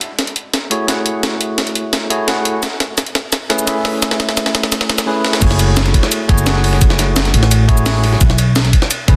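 Liquid drum and bass in a lush, melancholic mood, cut from a longer piece, opening on a build-up in which a gritty, pitched-up breakbeat kit plays a drum fill of crash, hi-hat, shaker and a compressed, tape-toned snare that sits up front with a small-room character. At 0.7 seconds a bell-like tine electric piano enters with clean, direct chords, its bright tone trailing into dub echo as the harmony moves from F#m9 to B13sus4. The drop lands at 5.4 seconds, bringing in a knocking, layered electronic kick, a woody pizzicato upright bass on steel strings placed up front, and a second, dusty soul-style kit of hi-hat, ride and natural-pitched snare mixed beneath the breakbeat. The chords return to F#m9 and close on Bsus2 as the two kits and the bass carry the groove. Light reverb and digital ambience surround the parts, and the master is dense and heavily limited.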